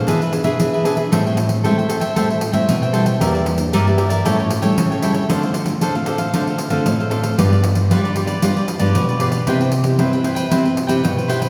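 The pandeiro sits up front, jingly and struck with hard hands, close and dry from 0.1 seconds in this lively, playful samba and choro excerpt in a straight 4/4. Beneath it a bright, crisp cavaquinho picks out the accompaniment, while a fingerpicked classical nylon-string guitar adds a warm second accompanying voice. A second nylon-string guitar carries the bass line from the background, its old strings giving a woody tone. The harmony moves from E7 into Am7, then through Em7b5, A7, Dm7 and G7 before settling on Cmaj7 at 9.5 seconds. A wet concert-hall reverb with a long tail surrounds the ensemble, giving the fragment, cut from a longer piece, the resonance of a church or hall.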